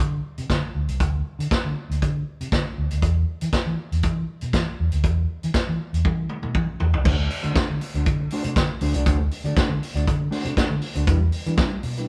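A vintage drum kit with dark cymbals and a punchy kick drives this sultry disco excerpt at 119 BPM alongside a round, foam-muted electric bass, with a drum fill at 6.0 seconds leading to a clean, fingered electric guitar entering at 7.0 seconds over D7 and Em7 chords, all set in a moderate stone room reverb that gives the sense of a band playing live together.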